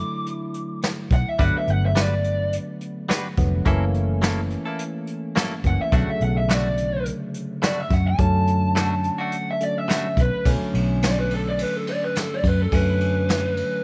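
Straight-eighth soul blues in B minor at 106 BPM, mournful and brooding, cut from a longer piece, with a dark, overdriven lead guitar soloing up front from a small cranked amp over a barky tine electric piano with analog chorus, a jazz brush kit with dark cymbals and a boomy kick from 0.3 seconds, a round, foam-muted vintage bass from 1.1 seconds, and twangy, scooped clean guitar stabs from 1.4 seconds, all moving through Bm7, Gmaj7 and F#7#9 in a studio reverb.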